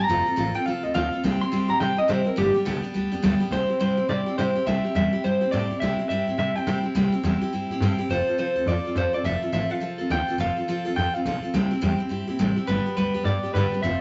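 A dark, slightly broken-up, lo-fi electric guitar takes an up-front solo melody through its first 3.5 seconds in this retro, rollicking rockabilly excerpt in C major at a swung 210 BPM, backed by a bright, full-bodied picked dreadnought acoustic guitar with audible finger squeak and a woody pizzicato upright bass that enters at 0.1 seconds, all set in a wet studio reverb with softened highs as the chords cycle through F, C and G.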